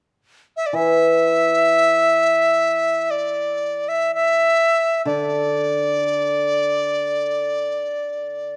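Moving in free time, this festive, graceful Chinese chamber excerpt opens with a bright, reedy dizi carrying the melody from 0.6 seconds, its buzzing membrane and crisp attack close and up front, while a shimmering, ringing hammered dulcimer accompanies softer beneath it from 0.7 seconds, all set in light reverb.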